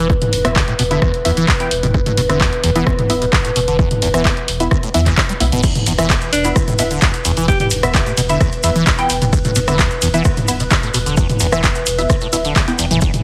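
A straight 4/4 acid house groove at 130 BPM is driven by a dry, punchy electronic kick up front and a tape-warm analog drum machine re-recorded in a large room, with crash, ride, hi-hat, handclaps, rim clicks and toms, while grainy maracas join in the background at 5.6 s. Underneath, a squelchy, resonant sawtooth acid bass riff with filter sweeps, phaser, chorus and delay rides over a round sine sub bass, both pumping with sidechain alongside a moody, detuned analog pad of sustained chords with lush chorus and muted dub chord stabs coloured by phaser, delay and cassette tape. Within this trippy, raw mood, an edgy, forceful alto saxophone cuts in briefly with scooped notes and delay from 6.3 to 7.7 s, all within a heavily compressed radio sound and light digital ambience in this cut from a longer piece.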